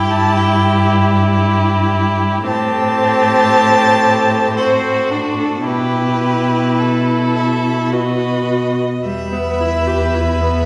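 In a rubato 3/4 at 53-59 BPM, this melancholic, solemn slow romantic movement for string quartet in E minor, cut from a longer piece, sets a clear, focused, distant first violin melody over a rich second violin line, with a smooth, even viola accompaniment and a soft-attacked cello bass with expressive portamento both up front, all four bowed with vibrato and heard from further back in a wet recital hall.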